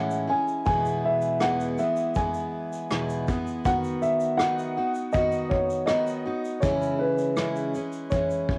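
A straight 4/4 pulse at 81 BPM is kept by a vintage brush drum kit with a punchy kick, rim click and shaker, entering at 0.1 seconds in this heartfelt, sunny acoustic pop fragment in B major. A full-bodied, up-front picked steel-string acoustic guitar carries the accompaniment through chords moving from Amaj7 to E, B/D# and C#m, while a dark, woody upright piano with audible action noise and long sustain sings the melody through tape echo. Light reverb and the softened character of a home cassette recording give the piece an intimate, vintage glow.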